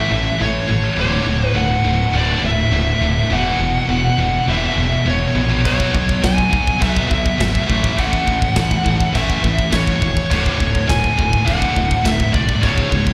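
A high-gain lead guitar sings an up-front melody over a heavy riffing guitar, a scooped guitar in the background and a round, punchy fuzz bass, before a tight, polished metal kit with crash, kick and snare enters at 5.7 s, giving this epic, relentless heavy metal fragment the feel of a live gig heard through the venue's PA.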